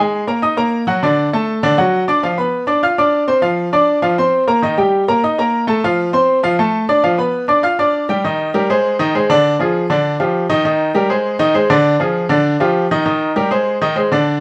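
An intimate recording with light reverb places a solo upright piano up front, its woody tone carrying audible action noise and long sustain. This is a passionate, danceable Latin piece in C minor, taken from a longer work and moving at a brisk 200 BPM in a straight 4/4. The piano covers a broad range from D3 to F6, with a bright, brilliant sound. The opening passage drifts through a colourful run of chords, from Bb7sus4 and D through Eb and F6 to a G7. At 8.2 s the music settles into a tighter cycle of Cm7, Ab, Ddim and G5 that repeats until the excerpt ends at 14.4 s.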